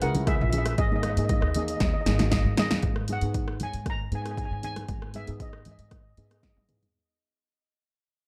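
Dark, dry production frames this brooding, bittersweet calypso fragment at 117 BPM in G# minor, where a shimmering lead steel pan with digital delay carries the melody over a mellow double-seconds pan on soft rubber sticks, woody pizzicato upright bass and a punchy, overdriven analog drum machine up front, while bright congas sit in the background from 0.2 seconds; the chords move from C#m to G#sus2 and then G#m, with drum fills at 1.8 and 6.4 seconds and a fade-out beginning at 2.8 seconds.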